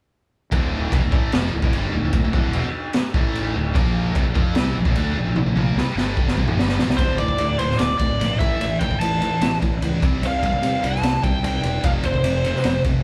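Recorded as a band playing live in one large studio room with moderate reverb, this aggressive, menacing hard rock excerpt in D minor at 148 BPM combines a bright, high-gain distorted guitar and a second overdriven guitar sitting in the background with a growly, punchy fuzz bass and an up-front, gritty garage drum kit with a boomy kick, high-tuned snare and dark cymbals, with a drum fill from 5.4 to 7.0 seconds before a biting, overdriven lead guitar enters at 7.0 seconds for the closing section.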